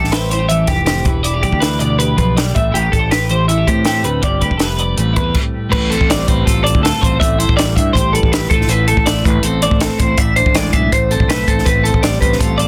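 Restless and wistful, this math rock and midwest emo excerpt in A minor moves at 161 BPM in straight 4/4, with two bright, twangy twelve-string electric guitars (one picking chords up front, the other picking tape-echoed arpeggios) riding over a growling, overdriven fingered bass and a dry, compact cocktail drum kit with a high-tuned snare, punchy kick and dark cymbals, all cut to a dense, heavily limited master with little reverb, as a brief stop at 5.3 seconds gives way to chords over an A pedal from 5.7 seconds.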